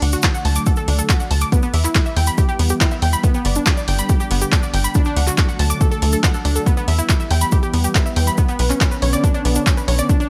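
A chorused, detuned analog pluck spins bright arpeggios with tape echo over a tight, nasal sawtooth sequencer bass and a dry, overdriven drum machine of handclaps and hi-hat, joined at 0.2 s by an up-front, punchy kick, while a lush, thick unison pad holds sustained chords through D, Em, G and Bmadd9 under a filter sweep, with a grainy cabasa in the background and sidechain pumping on the pad, pluck and bass, giving this euphoric, soaring uplifting trance fragment its surge.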